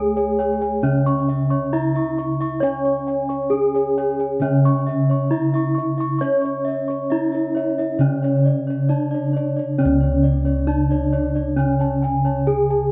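Close, detailed microphones and a light reverb frame this stately, shimmering fragment of Javanese gamelan in a straight 4/4. A dark, smooth bronze metallophone sits up front, its wooden mallet and paired tuning giving the melody a ringing glow, while two more metallophones, one airy and struck with padded disc mallets, supply a lower accompaniment and soft high arpeggios. Bossed gongs hit with padded beaters give a round, mellow bass, and a second gong part enters at 0.2 s with arpeggios of its own, touched by a slapback echo.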